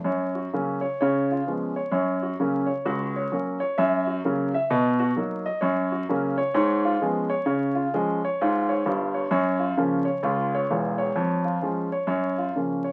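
An intimate, up-front grand piano with audible action noise carries this playful, exuberant stride jazz cut from a longer piece, swinging at 130 BPM in 4/4 from F# major into Db major at 7.5 s, heard through moderate studio reverb and the crackle of a very old 78 rpm record.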